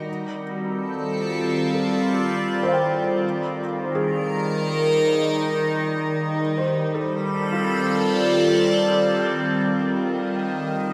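Soaked in a deep cathedral reverb with a 6.2-second decay, this luminous ambient excerpt floats in free time as a bright, morphing wavetable pad sits up front with slow-blooming sustained chords through a phaser, moving between G9sus4 and Ebadd11 before settling on Ebadd9. Beneath it, a detuned, warbling organ-like drone hums low with ensemble chorus and its own reverb. In the background, a felt-muted upright piano traces mellow, intimate arpeggios through a diffuse delay, its hammer action audible as it fades out across the full 10.9 seconds.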